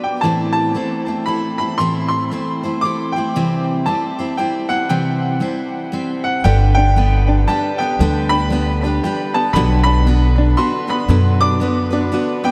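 A brilliant, vintage-toned upright piano carries the high melody through a delay over a picked dreadnought steel-string guitar in this peaceful, swinging acoustic folk fragment in 3/4, with a woody, thumpy pizzicato upright bass entering at 6.4 seconds and a twangy, plunky fingerpicked open-back banjo adding arpeggios from 6.5 seconds, the dreamy mix soaked in huge ambient reverb and cassette tape colour.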